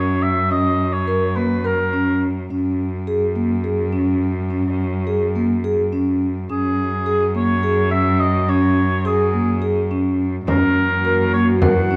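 A mellow oboe melody with vibrato opens this playful, hopeful contemporary chamber piece in 7/8 at 210 BPM in F# mixolydian, over ringing soft-mallet vibraphone arpeggios and a focused, bowed cello holding F#2; the oboe pauses after 2.3 seconds before returning, a deep, vintage frame drum enters in the background at 10.5 seconds as the harmony moves to F#7, and a warbling, nostalgic tape-like pad with chorus, phaser and its own reverb arrives at 11.0 seconds, heard through close, detailed microphones with light reverb in this cut from a longer work.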